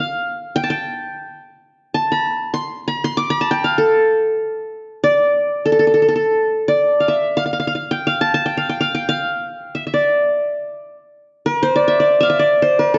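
Worn, warbling cassette tape colors this recording, its pitch drifting and its top end dulled, with a moderate recital hall reverb trailing around a single qanun. In free time and maqam bayati on A, the solo qanun sits up front from 0.0 to 13.0 seconds, its plectrum-plucked triple strings sounding bright-edged yet warm as it ranges from A4 to D6. The mood is hypnotic and melancholic, a brief cut from a longer piece in which an opening passage returns at 6.4 seconds.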